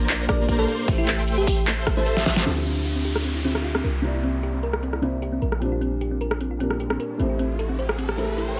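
A bittersweet, emotional future bass drop at 152 BPM in a half-time D minor feel opens with huge, lush supersaw chords under phaser, a soft, boxy felt-muted upright piano with tape echo and a deep, boomy 808-style bass, all pumping to the sidechain, as an overdriven dubstep kit with a deep snare and a punchy electronic kick join a sparkling, warbling bell-like FM electric piano melody, before the supersaws and electric piano give way at 2.5 seconds to round, tine-like thumb-piano-style synth pluck arpeggios over Dm11, C9, Bb69 and Am7 chords, accompanied by a downlifter and a riser, the riser building from 5.7 seconds.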